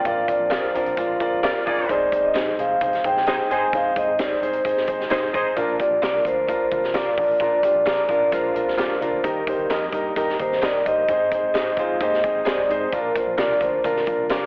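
A straight, danceable 4/4 groove from a roomy big-band drum kit with a punchy kick and high-tuned snare drives this upbeat 1960s-style soul snippet, with a dark, foam-muted electric bass in the background and a woody upright piano up front. Soft-mallet vibraphone carries the mellow, ringing melody and takes a solo from 5.6 seconds, while a tight horn section adds a second line from 1.4 to 5.5 seconds. Beneath them, a lightly overdriven tonewheel organ holds chords through a slow rotary speaker with chorus vibrato, and two slightly broken-up electric guitars through a small old amp play a brief recurring riff with subtle chorus and stabs bathed in spring reverb, all in a heavily compressed, telephone-like radio sound.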